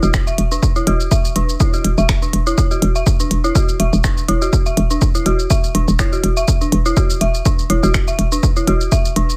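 A hollow, bouncy FM bass knocks up front beside a punchy, tape-warm electronic kick, while an eerie, inharmonic detuned synth bell riff rides chorus and delay, the bell and bass both pumping against the sidechain, and a minimal kit of finger snaps, clicky hi-hat and shaker sits in a small room, giving this cool, hypnotic, lightly swung minimal techno cut a dry, close sound.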